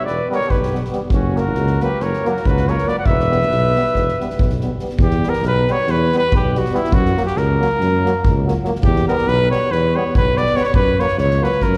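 Balkan brass band folk in a restless, bittersweet 9/8 at 281 BPM in E dorian sharp4, speeding up throughout this cut from a longer piece: a mellow, close-miked cornet carries the melody up front over an equally up-front tuba bass, a warm flugelhorn adds a second line only until 4.6 seconds, a warm trombone and a clear, distant euphonium with light vibrato hold background accompaniment with slapback echo, and a soft-mallet drum kit with a fat snare and boomy kick fills the big room, all heard as a live gig through the venue's PA with recital-hall reverb, moving between Em and F#.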